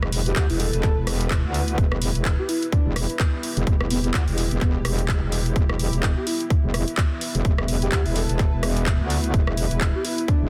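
A metallic, aggressive wobble bass sits up front in this gritty, bouncy bass house excerpt, its saturated tone pumping against a tight electronic kick that arrives at 0.4 seconds alongside a house kit of handclaps, rim clicks and tape-warm hats with a swung sixteenth feel. A soft, breathy flute-like synth lead carries the melody through chorus, cassette tape colour and delay, while a moody analog pad with 12-bit sampler grit and a blurred granular cloud pad drift in the background, both pumping with the kick. The mix is dry, dense and heavily limited.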